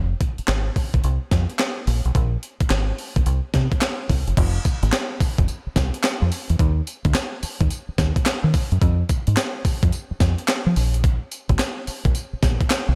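A swung 108 BPM new jack swing groove in F dorian drives this punchy, confident R&B excerpt, where a dark, round, foam-muted fingered electric bass sits up front from the start while a gritty, compressed breakbeat sampler-style kit with a thumpy kick, medium-tuned snare, hi-hat, handclaps, tambourine and crash cymbal enters at 0.2 seconds, all set in light digital ambience before the groove moves into a new section at 4.4 seconds.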